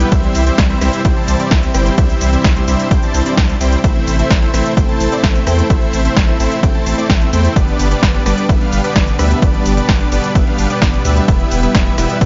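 A huge, detuned supersaw riff sits up front, its dense, compressed sawtooth layers carrying vibrato and a tape echo as it pumps against the kick, while a saturated sine sub bass holds down the low end and a lush, chorused pad with slow-attack sustained chords fills out the background in this euphoric, powerful festival progressive house excerpt at 129 BPM in A minor. A big-room kit of crisp hi-hats, ride cymbal, cabasa, rim click and a punchy snare plays from the very start, and an overdriven, punchy electronic kick joins it at 0.1 seconds, all of it re-recorded in a large room. The chords move from C to Am, G and Em inside a digital ambience that stays dark and rolled off above 7.5 kHz.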